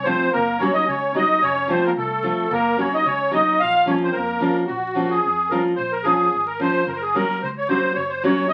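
Fiery and virtuosic, this short excerpt of Balkan wedding-band folk moves at 110 BPM in a swung 2/4 in B-flat minor, with a reedy, shimmering musette accordion carrying the melody up front, a dark trumpet with light vibrato playing a smooth second line until 4.7 seconds, a bright fingerpicked nylon-string guitar accompanying up front, and a foam-muted fingered electric bass sitting in the background, before the accordion takes a solo from 4.7 seconds, all heard through studio reverb and the crackle of a very old 78 rpm record.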